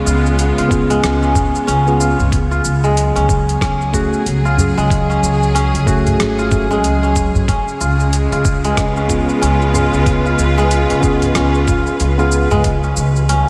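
Soaked in a lush hall reverb, this dreamy excerpt of organic downtempo moves at 93 BPM in 4/4 with a swung sixteenth-note feel and a meditative mood. A bright, fingerpicked kora rings out arpeggios through analog delay and shimmer reverb, while a worn, slightly out-of-tune tine electric piano, lightly overdriven and pumping with the sidechain, plays the accompaniment over C#7 and F#madd9/C# chords. A smooth, bowed symphonic string section sustains clear chords with vibrato beneath them, and a woody, gut-strung pizzicato upright bass sits up front with a thumpy low end. The gritty, compressed drums come from a dusty soul sampler-style kit of cabasa, hi-hat and rim click, joined by an overdriven electronic kick and a small, close and dry udu played very quietly. An airy, breathy wind-like tuned noise texture drifts in at 8.6 seconds, the chords drop away at 12.6 seconds, and a very quiet electronic riser appears at 13.2 seconds as the excerpt ends.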